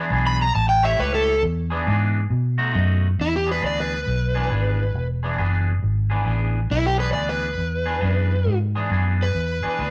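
Electric blues shuffle at 136 BPM in 4/4, swung on the eighths in E mixolydian, with a laid-back, gritty mood; this is an excerpt cut from a longer piece. A clean electric guitar opens at 0.0 seconds with a bright, twangy picked riff colored by phaser, sitting lower in the mix than the other parts. A vintage muted fingered bass comes in at 0.1 seconds, dark, round and punchy, placed up front. An overdriven slide guitar enters at 0.3 seconds to carry the melody in a high register, its fingered tone warm and up front, and it takes a solo through the opening 3.2 seconds over chords moving from E7 to A7, back to E7, then B7, before a new section begins on E7. The whole takes on a rough rehearsal-room character with tube saturation and a moderate stone-room reverb.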